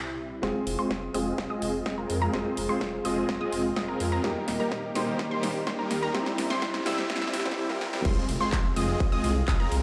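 A straight 4/4 pulse at 126 BPM drives this anthemic, euphoric festival progressive house clip in F minor: a punchy, layered electronic kick and a big-room kit with metallic hats, handclaps, snare, crash and ride enter at 0.4 s under huge detuned supersaw chords, a thick, saturated saw bass with chorus, and bright plucked arpeggios tinged with cassette-tape colour, all three synths pumping to the sidechain. A soft felt-muted upright piano with delay sits in the background, and a very quiet, warbling unison pad holds chords from the start, while filter sweeps on the supersaw and pluck, drum fills and a faint riser and noise sweep from 4.4 s lift the Fm, Eb, C progression. At 8.1 s the piano stops as an impact marks the drop back to Fm, the mix ringing in a lush hall reverb and a bare stone room.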